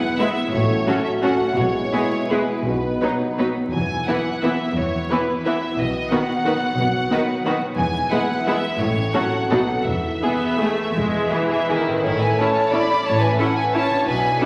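An orchestral ballroom waltz in E major, festive and elegant, moves in a rubato 3/4 at roughly 155-194 BPM, with a lush, vibrato-rich violin section carrying the melody over a second violin line, a rich, smooth viola accompaniment and a bass of cellos and double basses. A dark, distant French horn section holds very quiet sustained chords while a concert harp rings out fingerpicked arpeggios, and at 11.5 s an airy, hollow silver flute slips in with a second line as the harmony shifts to A at 12.0 s. The whole sits in a wet scoring-stage reverb with vinyl crackle, cut from a longer piece.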